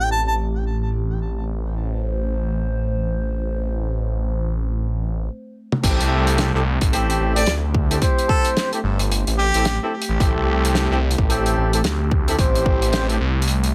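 A swaggering, funky glitch hop excerpt opens on a warbling, nostalgic pad sitting in the background over a swirling, thick detuned saw bass with phaser, while a harmonica sounds briefly with delay. After a drum fill, a loose acoustic kit with a fat snare and dark cymbals enters at 5.7 seconds. The drop arrives at 5.8 seconds, bringing a punchy electronic kick and mellow horn stabs carrying 12-bit sampler grit and sidechain pumping. The harmonica returns at 7.4 seconds with a smooth top and light vibrato, playing a solo melody over the groove.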